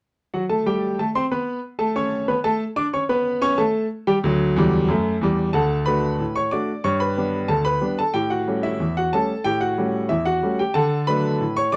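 A clear, woody upright piano plays solo and up front across a lively, jaunty ragtime excerpt in D major at 92 BPM in straight 2/4, spanning D2 to D6 in a light reverb as an opening passage gives way near 5.5 seconds to a second section moving through D, G and A7 before settling on D at 10.8 seconds.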